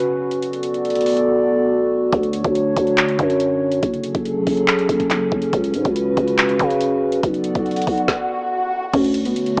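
A dark, detuned analog pad with chorus opens this brooding, hard-hitting trap fragment, holding moody, up-front chords beside an electronic trap kit with a knocking kick, woody snare, metallic hats, handclaps and crash cymbal. The drums drop out briefly during the opening break, and at 2.1 seconds a growling, buzzy 808-style bass arrives with a fast attack and decaying notes, giving the half-time groove its low-end weight. The chords move through Bm7, Dmaj7, F#madd9 and C#7sus4 before circling back, the pad's square and sawtooth layers lending a deep, sub-octave body with a moving notch. An electronic swell comes in up front at 7.5 seconds, and at 8.9 seconds muted, felt-like synth keys enter with a soft, intimate melody colored by chorus and cassette tape character. The whole piece has a homemade cassette feel with a small-speaker sound and moderate spring reverb.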